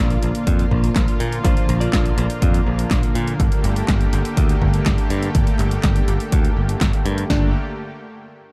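Italo disco excerpt at 123 BPM in G minor, melodramatic and nostalgic, where a lush, detuned sawtooth pad with chorus holds sustained chords over a growly, bright picked electric bass with tape echo and a punchy, layered house kit of kick, snare, handclaps and hi-hat in studio reverb, while a clean, compressed direct electric guitar plays tape-echoed stabs until 3.4 s as the harmony moves from Bb to Gmadd9, and a clear electric grand piano with digital delay enters on a single melody note at 7.3 s, all within a dark, dry production.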